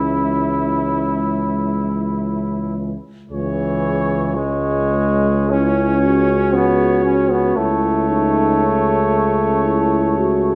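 Classical, hymn-like brass band music in C# minor at a slow, rubato 50-60 BPM carries an elegiac, yearning mood through this short excerpt, as a warm cornet with light vibrato and soft attack sings the melody over a dark, background French horn section on the second line, a clear, roomy trombone and a smooth-topped euphonium in accompaniment, and a mellow tuba holding a low C#2 up front, all blooming in moderate recital hall reverb and shifting to a new section at 3.3 s.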